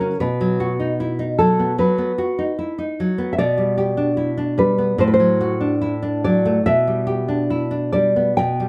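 Serene and warm, this rubato romantic excerpt pairs two dark, woody nylon-string guitars with the aged tone of old strings: one carries the full-bodied, thumb-plucked melody while the other supplies an up-front fingerpicked accompaniment, both heard through close, detailed microphones with light reverb.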